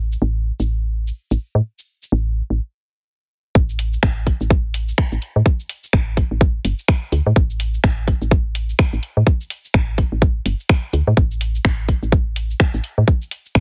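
A swung 16th-note groove at 126 BPM in 4/4 drives this clinical, quirky minimal techno fragment, cut from a longer piece and tuned slightly low to A4 = 436 Hz. A woody FM bass opens the track, soft and round with a fast attack and dark, decaying notes between G1 and A2, pumping under sidechain compression. Almost at once a garage drum kit joins with finger snaps, shaker and warm hi-hats, layered and placed up front. After a stop from 2.6 to 3.6 seconds, the drop arrives at 3.6 seconds and brings in a tight, layered electronic kick that sits prominently at the front of the mix for the rest of the passage. The overall sound has a digital ambience, squeezed into a heavily compressed, radio-like tone by multiband compression.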